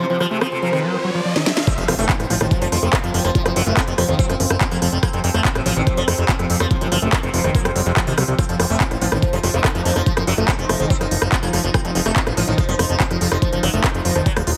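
A shimmering, buzzing sitar melody with phaser and dub echo, a background drone of moving overtones, a squelchy, screaming distorted acid riff, a very quiet breathy pad and an electronic riser open this driving, intense psychedelic trance piece together, while overdriven techno drums with cracking snare and smooth hats sweep in through a filter until the drop at 1.7 seconds lands with an impact, a knocking up-front kick and a fat, detuned analog bass, as the sitar, drone and acid line pump throughout and a very quiet, nasal vowel-sweep wobble bass surfaces briefly at 1.9 seconds and again from 8.6 seconds, all in a heavily compressed, radio-like mix with light digital ambience.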